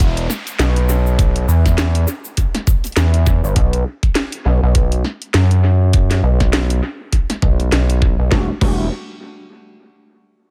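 A dry, echo-heavy glitch hop mix with a playful, funky swing, built on a gritty, nasal, distorted synth bass that sits up front under a filter sweep, a knocking electronic kick, and a small-room drum kit of cracking snare, bright hi-hats and crash cymbal carrying analog delay, while a grainy egg shaker and a background downlifter drop out by 3.6 seconds, and dark, clean electric guitar stabs with sidechain pumping and delay arrive at 8.3 seconds on an Em11 chord.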